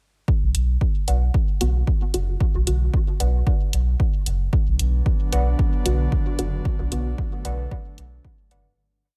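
A dry, close-sounding mix carries this hypnotic, deep dub techno piece in B minor at 113 BPM with a light 16th-note swing, where a punchy four-on-the-floor electronic kick and programmed closed hi-hats drive a round, soft off-beat sub bass that pumps with sidechain, while a warbling, lo-fi pluck riff and muted, filtered chord stabs move one shape in parallel through chorus and dub echo, the stabs also phased and swept by a filter, before an airy, breathy pad enters at 4.7 seconds and a fade-out begins at 5.9 seconds.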